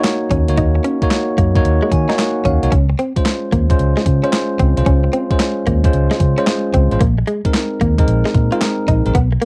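Confident and punchy, this new jack swing R&B excerpt moves at 112 BPM in 4/4 with a 66% swing on the sixteenths, sitting in Eb dorian over chords of Ebm7, Dbmaj7 and Bb9sus4. A clean 12-bit digital drum machine opens at 0.0 s with a thumpy kick, medium-tuned snare, hi-hat and handclaps, its sampler-style hits overdriven and placed up front. Alongside it, a bright, bell-like tine electric piano carries the accompaniment, adding a fill between 1.6 and 2.7 s. From 0.3 s a vintage fingered electric bass, foam-muted, round and dark, anchors the low end as the loudest part. A direct-recorded clean electric guitar plays a compressed, picked riff colored by analog chorus. The home cassette recording lends the drums, keys and guitar a tape character, all set in light reverb.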